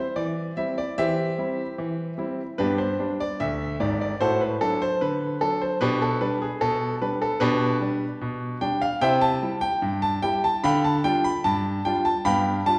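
A clear, intimate grand piano opens this lively, cheerful ragtime fragment in C major, playing solo at 74 BPM in a straight 2/4 across a range from Ab1 to B5. The piano sits up front with short sustain and audible action noise, moving through chords such as C/E, G, D/A and G/B before reaching C at 9.0 seconds and G5/D at 10.6 seconds. A wet recital hall reverb surrounds it, and the top end is softly rolled off, giving the 12.8-second passage, cut from a longer piece, a natural concert-room sound.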